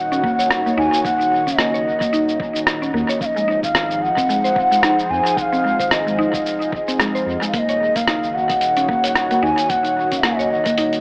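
A loping 111 BPM groove in 4/4 with a swung sixteenth feel opens this organic downtempo excerpt, carried by a gritty, compressed sampler-style kit of cabasa, hi-hat and rim click sitting up front with tape echo, underpinned by a thumpy electronic kick re-recorded in a small room. A deep, round sine sub bass pumps in the background beneath a smooth, detuned sawtooth pad whose slow-attack chords are treated with chorus and the same sidechain pumping, moving from Ebm7 to Fm7 at 3.2 seconds and back to Ebm7 at 7.5 seconds. Woody, percussive FM plucks with a mallet-like character spin arpeggios through subtle chorus and tape echo. Up front, an airy bamboo bansuri carries the melody with a breathy chiff, vibrato and a slightly unsteady line, trailing dub echo. A deep, close udu enters very quietly at 8.2 seconds. Soaked in a 2.4-second spring reverb and an AM-radio tint, the echo-heavy mix feels earthy and meditative.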